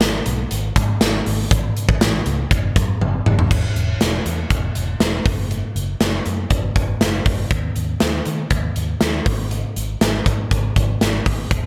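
A light reverb frames this moody, urgent excerpt of 1980s-style pop in a straight 4/4. A big acoustic rock drum kit with a big-room sound sits up front, with a punchy kick, a medium-tuned snare, bright crash cymbals, hi-hat, tambourine and toms, and it plays a fill from 3.0 to 3.5 seconds that leads into a new section. Under it, a vintage muted fingered electric bass plays throughout with a dark, round, foam-muted, amped tone.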